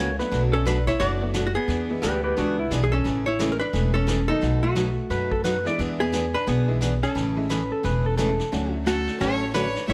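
Country western swing at 176 BPM in 4/4, this short excerpt from a longer piece has a down-home, playful mood with a swung eighth-note feel in A major. A dark, clean hollow-body jazz guitar carries the melody up front, with a compressed, picked tone, while a twangy lap steel slides in a second line that drops out at 2.7 seconds and returns at 5.1 seconds. Underneath, a bright, full-bodied dreadnought acoustic guitar and a jangly, metallic tack piano in the background supply the accompaniment, and a woody, thumpy upright bass with gut strings sits up front. A vintage brush kit adds brushed snare, hi-hat and a punchy kick with a rolled-off top. At 8.9 seconds a clear, focused fiddle with light vibrato enters for the closing moment, over changes that move from Bm7 and E7 to Amaj7 and finally Dmaj7, all in a light reverb.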